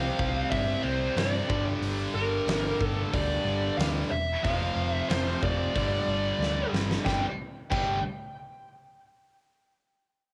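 A smooth, dark lead guitar sings up front over three bright, picked rhythm guitars (one overdriven, one tight and distorted, and one double-tracked and high-gain) that churn out a heavy riff in the background, all colored by cassette tape, with tape echo on the lead alone. A round, punchy hollow-body bass anchors the low end, and a huge arena drum kit with a fat snare, punchy kick and bright cymbals kicks in at 0.2 seconds. The driving hard rock passage, captured as a home recording with light reverb, moves through Gm and power chords before a drum fill from 6.4 to 7.1 seconds leads into a new section.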